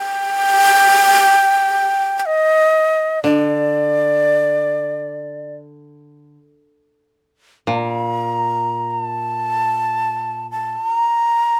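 Close, intimate sound in a small room with a moderate touch of reverb frames this austere, calm fragment of Japanese traditional chamber music in free time and the D miyako bushi mode, where a breathy, bamboo-toned shakuhachi carries the melody up front with a straight, tongued, expressive tone from the opening, while a dry, woody koto, played with fingerpicks, adds quieter low accompaniment from 3.2 to 10.7 seconds.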